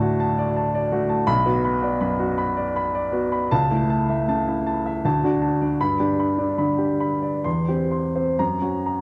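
Wrapped in a wet recital-hall reverb and a dark production, this brooding, bittersweet nine-second fragment of a romantic character piece in B minor features a solo baby grand piano, clear, open and up front with long sustain, spanning B1 to C6 in a rubato 3/4 at 63-85 BPM as its harmony drifts from D through Bm, G and C/E before settling on F#.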